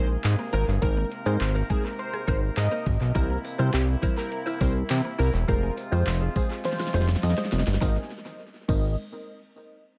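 A euphoric, carefree dance-pop excerpt opens with a punchy, detuned unison lead carrying a catchy melody over a hollow square pluck, background brass chords with light vibrato and a fat analog bass, all pumping under a filter sweep, alongside a woody mallet-like synth arpeggio and a clean direct-recorded guitar riff, as a knocking electronic R&B kit with handclaps enters at 0.2 seconds, a jingly tambourine joins at 3.2 seconds, and a drum fill leads into a fresh section at 7.8 seconds in a dry, echo-heavy mix.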